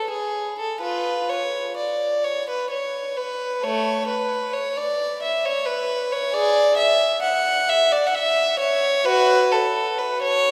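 A single bowed violin, up front and close with a rich, reedy gut-string tone in period style, plays a serene, dance-like baroque-style suite movement in a relaxed 3/4 at 65 BPM with flexible rubato, ringing into a lush cathedral reverb throughout this brief 10.5-second excerpt from a longer piece.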